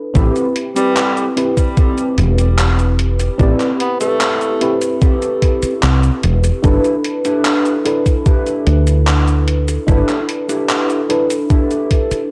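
A mellow FM electric piano opens this nostalgic, woozy vaporwave excerpt, its soft, round tone carrying a faint noise layer through analog chorus and tape echo. Almost at once the rest of the band joins at a relaxed 74 BPM in straight 4/4: a woody, hollow-sounding fretless bass sitting dark and punchy up front, a thumpy overdriven electronic kick, and a gated 80s drum machine adding cabasa, handclaps and hi-hat, the two drum parts re-recorded in a large room. A clean, fingered electric guitar plays a dusky riff, sharing the piano's chorus and tape echo. From 0.8 to 4.8 seconds a breathy tenor saxophone offers a short, whispered, intimate solo line with light vibrato and its own tape echo. The harmony rests on Am9 before moving to G6 at 6.6 seconds, and the whole fragment, cut from a longer piece, sounds gritty and cassette-worn, with transformer saturation and a light digital ambience.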